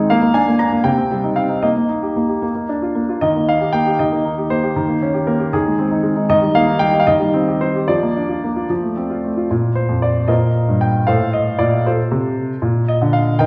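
A clear, present grand piano plays alone from the start in this graceful, playful classical-period sonatina, moving in a lilting 6/8 at 77 BPM (dotted quarters) with a flexible, rubato feel. It opens in E-flat major and turns toward B-flat major at 6.3 seconds, and a new section begins at 9.5 seconds before the fragment, taken from a longer piece, breaks off at 13.5 seconds. A reverberant recital hall, heard from further back in the room, surrounds the piano with a lingering 1.6-second tail.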